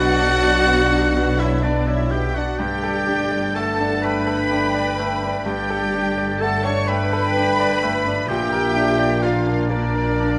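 Tender and uplifting, this rubato cinematic passage in 6/8, cut from a longer piece, sets a lush, expressive violin section's melody over second lines from a clear solo oboe, a bright close-miked clarinet, a pure flute group and a distant, very quiet second violin section, while a brilliant baby grand piano with audible action noise and a very quiet viola section accompany, a mellow French horn section holds chords in the background, and dark cellos with smooth, even double basses carry the bass through Bm, Gadd9 and a Bb arriving at 8.3 s, all in a moderate concert hall reverb.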